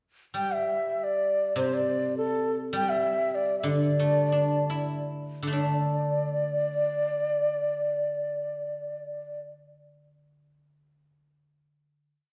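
A breathy, reedy low xiao sings a modal melody with ornaments, vibrato and tongued notes up front in this brief, festive and pastoral Chinese traditional chamber piece in a free rubato feel, while a silvery, ringing guzheng plucked with fingerpicks accompanies on its low strings, the music slowing from 2.7 s before settling on a final chord at 5.5 s, all bathed in the lush reverb of a recital hall.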